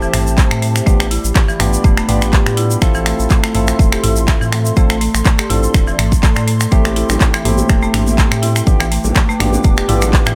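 A dry excerpt of spiritual, driving afro house, where a punchy, up-front electronic kick and a produced afro-pop kit of snaps, handclaps, metallic hi-hats and toms drive the groove over a deep, round analog bass, while a woody, buzzing marimba with hard mallets spins dub-echoed arpeggios, a barky tine electric piano adds bright stabs, a moody detuned analog pad holds sustained chords in the background, a grainy tube shaker ticks along, and faint, ringing high-tuned congas join at 6.8 s, with the pad, marimba, electric piano and bass all pumping under sidechain compression.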